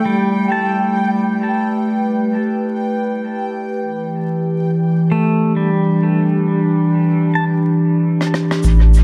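A lightly swung 99 BPM pulse in 4/4 underlies this peaceful, hazy ambient dub fragment, where a nostalgic, detuned tape-like pad holds A7sus4 moving to Em7 under a filter sweep, joined by a resonant, bubbling sawtooth texture stepping through random filter changes, both bathed in chorus and reverb. A clean, twangy pedal steel guitar played with fingerpicks and slide traces arpeggios with volume swells and dub echo until 7.4 seconds. At 8.2 seconds a brushed rim click and shaker fill arrives in an echo-heavy space flecked with vinyl crackle, and at 8.6 seconds a round, up-front sub bass and a very quiet analog kick drop in.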